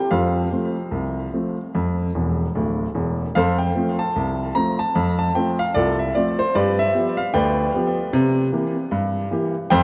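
Soaked in a dreamy plate reverb with a 3.4-second tail, this lively, jaunty ragtime excerpt in F major at 75 BPM in 2/4, tuned to A4 = 444 Hz, features a solo baby grand piano that sounds warm, natural and up front with a short sustain and added delay; it swings at 59% on the 16ths across a range from D1 to Bb5, plays a fill from 2.1 to 3.3 seconds as the opening section gives way to the next, and moves from F through G7 to C7.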